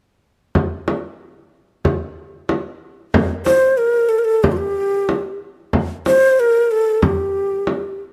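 Close, detailed microphones and a light reverb give this Arabic maqam ensemble piece an intimate, longing and soulful character at a straight 93 BPM in 4/4, tuned to A4 = 444 Hz. A deep, up-front frame drum opens alone at 0.6 seconds. At 3.5 seconds a breathy, hollow bamboo shakuhachi enters up front with vibrato, tongued notes, a chiff and lifted highs, carrying the melody between F4 and C5 while the drum continues until 7.8 seconds.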